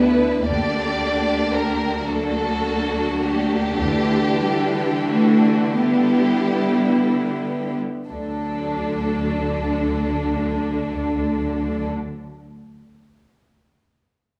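A rich, lush viola section sits most prominently in this serene slow romantic movement for symphony orchestra, carrying a smooth, even accompaniment with close vibrato. Above it, one violin section sings a warm, expressive melody while a second violin section traces a supporting line with portamento and vibrato, this second part sounding close and warm. A clear cello section anchors the bass with smooth bowing, and a warm double bass section joins at 0.5 seconds, its expressive vibrato adding depth underneath. The music moves in a gentle 6/8 at a very slow, rubato pace in D major, easing steadily through its opening and passing from a G minor colour over a held D toward a settled D major chord at 8.1 seconds. A moderate recital hall reverb lends the strings a soft bloom, and the passage is cut from a longer piece.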